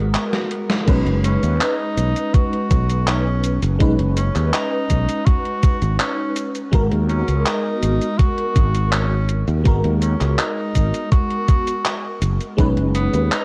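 A clear, solo tenor saxophone with scooped notes, sampler grit and tape echo opens this faded, dreamy vaporwave piece over a lush FM electric piano with a soft pad layer and ensemble chorus, while an up-front, direct fretless bass anchors the low end. A gated 80s drum machine with overdrive plays a short fill from 0.3 s, then settles into a straight groove of gated-reverb snare, handclaps, cabasa, hi-hat and crash as a thumpy, overdriven electronic kick joins at 0.9 s. The harmony drifts between G#m9 and B69 in a dark, cassette-tinged mix, and the piece is cut from a longer work.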